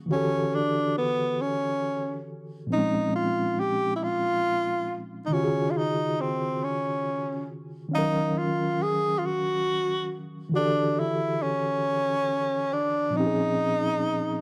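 Late-night and sultry, this short R&B excerpt moves at a slow 46 BPM in 6/8, cut from a longer piece. A reedy electric piano carries the accompaniment from the first moment, its clean tone shimmering with a fast tremolo through built-in speakers and sitting up front. At 0.1 seconds a breathy tenor saxophone takes the melody in a jazz style, clear and close-miked with vibrato, a slapback echo trailing its phrases. The harmony drifts through lush eleventh chords, opening on Em11, sliding to Bbm11 and settling on Ebm11 at 5.3 seconds before returning to Em11 and Bbm11. The sound is dry and intimate, a close 1970s-style studio recording with a small room ambience.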